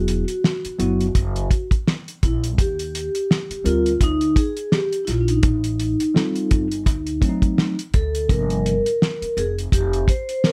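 Light reverb gives this short cut from a longer jazz-hop track a mellow, cool air, with the cloth-damped drum kit sitting up front, dry and thuddy, with a fat snare, tight kick and rolled-off top. At 84 BPM in 4/4 with a 57% swing on the sixteenths, the hip hop groove takes shape as the hi-hat, kick and snare come in at 0.1 seconds. An upright bass plucks dark, woody, growly pizzicato lines low in the register, also up front. A mellow tine electric piano played through its built-in speakers adds clean, warm accompaniment until 8.7 seconds. A vibraphone struck with soft mallets carries the melody, metallic and ringing with slow motor vibrato and a slapback echo. The harmony drifts from Esus2 through Ebmaj9 and Am7b5 to D7b9 before settling on Gm7.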